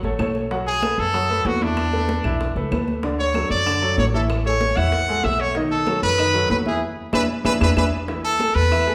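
Festive and sunny, this brisk 190 BPM salsa excerpt in A major sets a clear, slightly worn grand piano and a growly, thumpy pizzicato upright bass over ringing, high-tuned congas and very quiet, tight bongos, with woody claves joining in the background at 0.2 s before a brilliant, punchy solo trumpet with light vibrato enters up front at 0.7 s. The whole band hits an accent from 6.8 s, joined by a drum fill at 7.1 s, all bathed in a wet recital-hall reverb.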